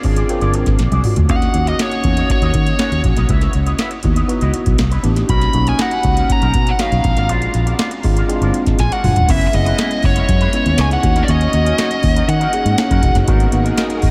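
Soaked in a huge, dreamy reverb, this slick, nocturnal slice of polished 1980s jazz-funk pop moves at 120 BPM, with a booming, overdriven analog drum machine's deep kick and crisp snare up front, a dark, round fingered bass, a worn, slightly out-of-tune tine electric piano through a combo amp, and a twangy envelope-filtered guitar riff, while a nasal lead guitar with a parked wah, overdrive and delay carries the melody from 1.3 s to 13.1 s before a lush bowed string section enters at 13.3 s on a G#m9 chord.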